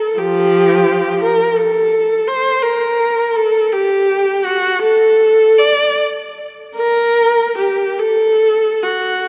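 This classical piece for unaccompanied viola is mournful and meditative, moving freely in 6/8 at a slow, rubato 42-58 BPM in dotted quarters. A single bowed viola sits up front with a rich, focused tone, expressive vibrato and a smooth top, ranging from F3 to D5 across the 9.3-second fragment cut from a longer work. The sound is dark and warm, bathed in a wet church reverb with a long 2.8-second decay and a layer of vinyl crackle.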